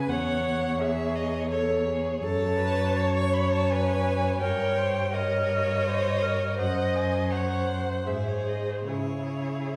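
Classical chamber music, this slow romantic movement for string quartet unfolds in triple metre with a rubato feel, its mood yearning and elegiac. The first violin carries the melody with a rich, close-miked tone, its expressive vibrato and portamento singing above the ensemble. The second violin supplies a warm second line, also shaded with vibrato and portamento, while the viola fills in the accompaniment with a focused, slightly distant sound. Beneath them, the cello holds the bass with a clear, smooth and even tone that sits up front. All four instruments play together throughout this short fragment of a longer piece, moving through minor-key harmony that comes to rest on its home chord at 8.9 seconds. The quartet is heard from further back in a recital hall whose reverberant acoustic lends a soft halo to the bowed strings.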